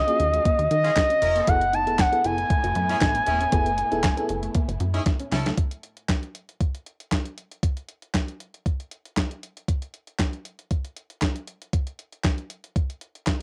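A smooth, up-front portamento lead with sawtooth and triangle tones, vibrato, chorus and plate reverb carries the melody over a slick, funky groove of early-eighties boogie funk at 117 BPM in a straight 4/4. Beneath it, a punchy, dark analog bass plucks out the low end with a fast attack and a moving notch, while a thumpy, overdriven 12-bit drum machine with a fat snare, hi-hat and handclaps sits up front. An FM electric piano with tremolo and a noise layer adds mellow accompaniment, a clean, fingered electric guitar plays a riff in the background, and a lush, bowed string section holds distant sustained chords. A tight, clear horn section with light vibrato enters at 0.8 seconds with a roomy second line as the harmony moves from Ebm11 to Gbm11. After a drum fill at 5.1 seconds, the drums carry on alone from 5.6 seconds until 13.4 seconds, and the whole cut has the light reverb of a home cassette recording.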